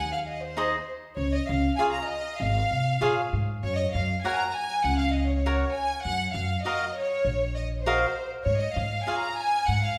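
A lush recital-hall reverb surrounds this short passage of proud, romantic Mexican mariachi folk, cut from a longer piece and set in Db major at an unhurried 99 BPM in straight 4/4. Up front, a rich studio violin section carries the melody between C5 and Bb5, its bowed ensemble tone focused and close with a singing vibrato. Beneath it, an upright bass plays pizzicato from Ab1 to C3, its steel strings giving a woody, growly bottom that runs the full 10 seconds. A crisp, picked cavaquinho joins at 0.6 seconds with warm acoustic accompaniment between Eb4 and Gb5, falling away at 9.3 seconds. The harmony moves from Ab to Db, then Gb, an Ebmadd9 over Gb, and settles on Db over Ab, giving the phrase a stately, heartfelt sweep.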